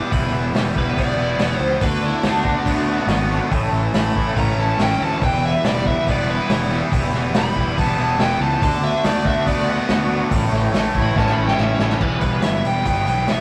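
A straight 4/4 groove at 141 BPM drives this swaggering, gritty classic rock passage in E dorian, cut from a longer piece and moving through Em, D6 and A before landing back on Em at 12.0 seconds. A vintage drum kit sits up front with a tight kick, medium-tuned snare, hi-hat and dark crash cymbals, its sound muffled and lo-fi with a rolled-off top, and it plays a fill from 11.2 to 12.0 seconds. A fuzz-soaked picked electric bass, also up front, carries the low end with an overdriven, direct-and-amped tone. Two electric guitars play riffs: one distorted, bright and compressed, the other overdriven and scooped, sitting further back in the mix. A biting lead guitar with a dark, overdriven tone takes a solo through the first 12.0 seconds. Behind it all, a thick tonewheel organ holds sustained chords through a slow rotary speaker with vibrato and light overdrive, and the rough rehearsal-room recording gives the band a moderate booth ambience.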